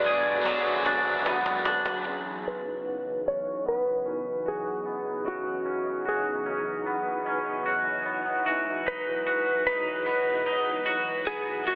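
At 75 BPM in a straight 4/4, this dreamy, floating dream pop excerpt opens with several parts at once. A clean lap steel guitar carries the melody with a dark, sliding tone, softened by a low-pass filter and trailed by digital delay. Beneath it, a twangy, scooped electric guitar picks arpeggios through lush chorus and delay, while a string machine voicing violas holds mellow sawtooth chords, its slow attack and long release shimmering through phaser and ensemble chorus. An overdriven electric guitar adds gritty tremolo accompaniment until 2.6 s, and a round, hollow-body bass sits deep in the background only briefly, dropping out at 1.6 s. A snappy cajon struck with hard hands plays a drum fill starting at 0.5 s, and from 2.1 s a filter sweep runs through the rest as the harmony moves from Bm6 to C#m11 and then Emaj9 at 8.5 s. The whole mix floats in a long, wet hall reverb, yet it is squeezed into a heavily compressed, telephone-like radio sound.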